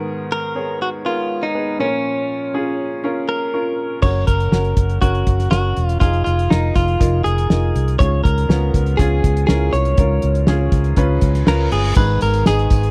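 A dry, close studio sound with a 1970s character and little reverb frames this short cut from a longer piano-driven pop piece, moving at 121 BPM in a straight 4/4 with a driving, earnest mood. A clear, woody upright piano, slightly detuned and with long sustain, carries the accompaniment from the start across a broad span of the keyboard, and a clean, compressed electric guitar, recorded direct and picked, enters almost at once to carry the melody up front. The piano plays a short fill just before 4.0 seconds, where a muted, fingered electric bass with a dark, round, punchy tone and a damped drum kit with a fat snare, tight kick and dark cymbals arrive together and push the groove forward. The harmony moves from Abmadd9 and Bbm into Gb, Fm7 and Db. An electronic reverse cymbal sounds quietly from 11.3 to 12.0 seconds, and a jingly, band-limited tambourine sits in the background as the chords turn to Abm at the close.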